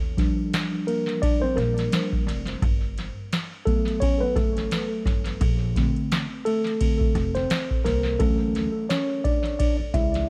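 An echo-heavy mix with light digital ambience and a bed of vinyl crackle frames this short jazz-hop cut, taken from a longer hip hop piece and moving at a relaxed 86 BPM in 4/4 with a gentle swing on the sixteenths. The mood is warm and smooth. A booming analog drum machine sits up front, its deep kick, crisp snare, metallic hi-hats and ride cymbal carrying the boxy character of being re-recorded in a small room and trailed by tape echo. Underneath, a pizzicato upright bass gives woody, thumpy low notes with a steel-string bite. Out in front, a worn, slightly out-of-tune tine electric piano takes a solo across the whole passage, its clean, direct tone also touched by tape echo. The harmony drifts through lush major-nine chords, moving from a rootless Ebmaj9 to Gmaj9, then Bbmaj9 at 5.4 seconds and Dmaj9 near the close.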